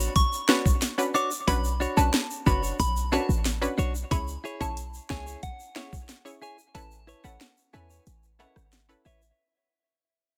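A dry, close-sounding dancehall excerpt with a tough, sultry mood fades out across its length, as a knocking, sharp electronic island pop drum kit and a punchy, tight 808-style sine bass sit up front beneath a round, detuned sawtooth analog pluck with chorus, twangy direct-recorded clean electric guitar arpeggios with tape echo, saturated egg shaker and timbales played with soft hands, and a pure FM synth bell melody washed in chorus, phaser and tape echo, before a break takes over at 6.8 seconds.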